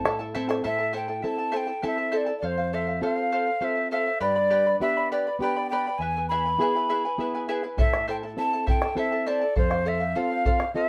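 In a straight three-beat metre, this wistful, earthy Andean folk piece, cut from a longer work, sets an airy, up-front cane quena with a crisp, chiffy attack over a shimmering, fingerpicked charango on double strings and a dark, classical nylon-string guitar, moving through Am, F, G and E. A deep bombo, heard in a small room, sounds briefly at the opening and returns from 7.8 seconds, with light reverb lending the ensemble some space.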